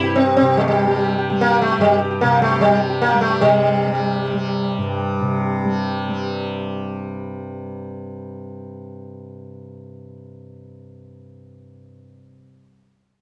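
A dry, close recording in a 1970s studio style, touched with light reverb, frames this introspective, meditative Hindustani classical fragment in 7/4 at 148 BPM, tuned to A4 = 441 Hz. Up front, a round, plectrum-plucked sitar carries the melody between G3 and G4, its sympathetic strings shimmering. A mellow, softly plucked tanpura drone, also up front, buzzes from G2 to G3, sounding alone after the sitar stops at 7.6 seconds and continuing to 12.6 seconds.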